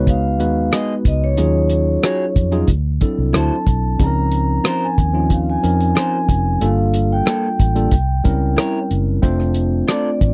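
A dry, close recording with little reverb gives this short cut from a longer 1970s-style soul piece an intimate, studio-bound feel, lush yet bittersweet and cinematic. At 92 BPM in a straight 4/4, a cloth-damped acoustic drum kit sits up front with a thuddy, tight kick, rim clicks and hi-hat, its top end rolled off into a dark, smooth tone. A vintage fingered electric bass, foam-muted and round, holds the low end up front, while a tine electric piano plays clean accompaniment through a combo amp. The melody comes from a vibraphone struck with medium mallets, metallic and ringing with the motor off, heard in a boxy small room. An electric guitar through a small old amp enters at 0.7 seconds with a slightly broken-up, compressed, lo-fi riff played with the fingers. The harmony moves through rich extended chords, from B6 and D#m11 to C#maj13, then Gm9 and C7b9 before settling on F6 at 9.2 seconds.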